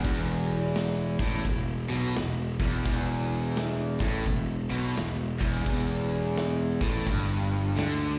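Blues rock power trio with a southern rock streak, this swaggering, raunchy 8-second cut from a longer piece rides a swung 86 BPM groove on an E5 chord, with a raw, bright, double-tracked overdriven guitar riff up front, a growly fuzz bass pushing the low end, and a big acoustic drum kit with a punchy kick, medium-tuned snare and hi-hat, all heard as a live gig through the venue's PA with a recital-hall ambience.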